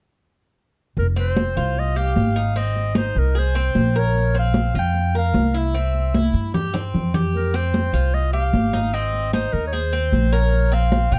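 This is Latin music in the Cuban son and guajira style, a danceable, sultry passage in F minor at 151 BPM in a straight 4/4, cut from a longer piece. At 1.0 seconds a solo clarinet in a warm, classical style carries the melody, while an up-front pizzicato upright bass with steel strings gives a woody, growly, thumpy low end, and high-tuned congas played with soft hands ring out as if in a small room. The acoustic Cuban tres joins at 1.2 seconds with bright, metallic picked arpeggios on its double strings, some of them octave-doubled. The harmony cycles through Fmadd9, Ab, Bbsus2 and C, and a drum fill arrives at 6.1 seconds before the progression starts again. Light reverb frames the mix, and the dark, warm production has its top end rolled off above 7.7 kHz.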